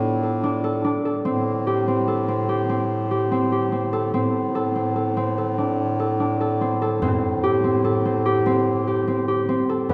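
Hypnotic and urgent, this short excerpt of contemporary chamber music moves in a straight 7/4 at 146 BPM in A minor, tuned slightly below standard pitch to A4 = 435 Hz, with chords shifting from Bm7b5/A to Am7. An up-front concert harp rings out thumb-plucked arpeggios throughout, while a clear, soft-attacked bass clarinet plays a low bass line in classical style, and a deep, distant frame drum enters very quietly at 7.0 seconds. A wet cathedral reverb with a 5.1-second tail surrounds the ensemble, giving it the spacious resonance of a church or concert hall.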